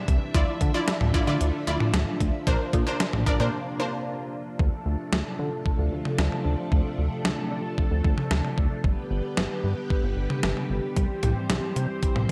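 Bright 1980s-style digital production with light reverb frames this melancholic, cool synth-pop passage at 113 BPM, cut from a longer piece, with a clean 12-bit drum machine up front whose thumpy kick, medium-tuned snare, hi-hat, toms and cowbell are overdriven and washed in gated reverb. A lush, detuned unison pluck with a filter sweep and ring modulation plays over Dmadd9 and Bbadd9 until 4.5 seconds, during a short break that runs from 3.5 seconds. Mellow string-machine chords with ensemble chorus and a dark, glossy pulse-wave synth bass carry on through Dm7, G and C to 12.3 seconds.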